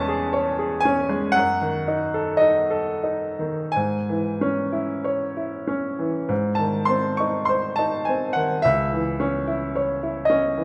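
A bright baby grand piano opens alone on a C# minor chord over E, setting a melancholic, wistful tone for this brief passage cut from a longer romantic nocturne. The tempo is slow, drifting between 43 and 59 BPM in 4/4, and the rubato feel lets the phrasing breathe freely. The harmony moves through a diminished chord over F# at 1.4 seconds, settles onto G# at 6.3 seconds, and comes home to C# minor at 8.6 seconds. Spanning C#2 to C#6, the piano sounds brilliant and sits up front in the listener's ear. A moderate recital hall reverb gives the notes a graceful, lingering tail.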